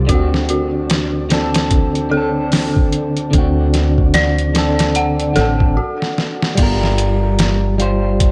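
A slightly broken-up electric guitar with harmonic tremolo and tape echo, a woody, gut-strung pizzicato upright bass, an eerie, inharmonic detuned synth bell with chorus and phaser, and a very quiet flickering grainy texture all begin together in this smoky, cinematic trip hop piece at 74 BPM, with the texture dropping out at 5.8 seconds. Meanwhile, a gritty, pitched-down sampler-style drum kit with a thumpy kick enters a moment later and sits up front, playing a fill during a brief break before the harmony moves from D7 to Gm7 at 6.6 seconds, where the bell drops out, all in light reverb.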